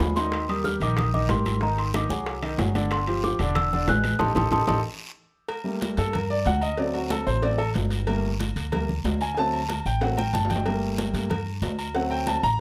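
Afro-Cuban jazz, sultry and driving, cut from a longer piece, where a bell-like, delicate celesta carries the opening melody until 4.8 s over an intimate grand piano, a woody, growly pizzicato upright bass up front, and a percussion bed of bright congas, tight, high-tuned bongos and cowbell, ringing timbales and agogo bells, and a raspy guiro. After a band accent and drum fill, the grand piano takes a solo from 5.5 s to the end, its natural tone, long sustain and audible action noise heard up close over a chord cycle that alternates Gmadd9 and D7. The sound is close and detailed with light reverb, the vintage, band-limited bongos and timbales adding an aged colour.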